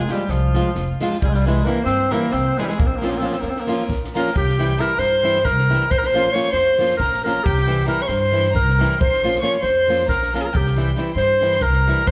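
Virtuosic yet bittersweet, this Balkan wedding-band passage moves in a straight 7/8 and is cut from a longer piece. A mellow clarinet carries the melody up front in a classical style, sounding somewhat distant and roomy. A rich violin plays a close, intimate second line with one player's airy bow, soft attack and light vibrato, drawn sul tasto. Underneath, a small fingerpicked nylon-string guitar picks out the accompaniment, while a woody, thumpy pizzicato upright bass anchors the low end. A compact cocktail kit adds a punchy kick and a dry, high-tuned snare, and the music moves from its opening section into a second one at 4.4 seconds, circling between Bbm and C. A moderate recital-hall reverb gives the whole ensemble the sound of a church or concert hall.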